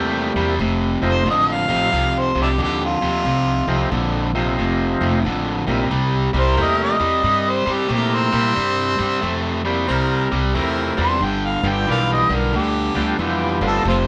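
Heard in a moderate small room, this laid-back, swaggering electric blues shuffle excerpt sets a bright, overdriven guitar riff up front over a woody pizzicato upright bass and a gritty tonewheel organ through a slow rotary speaker, while a roomy harmonica with tongue slaps and light vibrato carries the melody from 1.1 seconds and a tight, clear horn section adds soft-attack stabs from 6.3 seconds.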